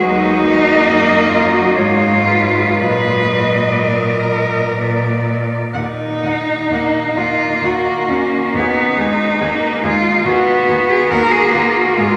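Classical and lyrical, this melancholic, elegiac passage for cello ensemble in Eb minor unfolds in a rubato 3/4 at 54-72 BPM, a short span cut from a longer piece. A bowed cello carries the melody with vibrato, a soft attack and expressive portamento. Beneath it, a focused, up-front second cello with a smooth top stands out as the most prominent line, while a clear, intense cello adds light-vibrato accompaniment from a distance and a distant, rich bass cello anchors the low register, all four bathed in a long, wet cathedral reverb as the harmony passes through a diminished chord and Ab minor before settling on Eb minor at 11.1 seconds.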